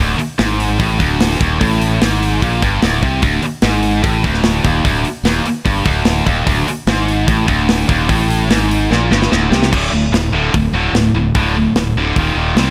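Menacing and aggressive, this hard rock excerpt pairs an up-front, double-tracked high-gain guitar riff with a growly, punchy fingered bass and a tight acoustic studio-room drum kit of crash, hi-hat, kick and snare with a rolled-off top, all kept dry, with a drum fill from 8.9 to 9.7 seconds leading into a new section.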